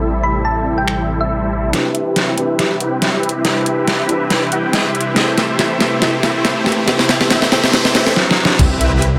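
A moderate digital room reverb frames this lush, dreamy future bass fragment, cut from a longer piece and running at 140 BPM in a half-time 4/4 feel with a light swing on the sixteenths. Huge, bright supersaw chords sit up front with ensemble chorus, sidechain pumping, a low-pass filter and dub echo, while an ethereal, airy pad holds sustained chords beneath them and a soft, felt-muted upright piano with vintage 12-bit sampler grit murmurs in the background. A thick, detuned saw bass anchors the Am7 opening and returns at 8.6 seconds, and a round, tine-like thumb-piano-style pluck with tape echo carries a brief melody until 1.7 seconds. From there the harmony moves to Cmaj7 and a build-up begins, with the supersaws sweeping through their filter and the dubstep drum kit, with its deep snare, metallic hats, finger snaps and crash, running a long fill. A very quiet riser and noise sweep gather toward a knocking electronic kick and impact at 8.6 seconds.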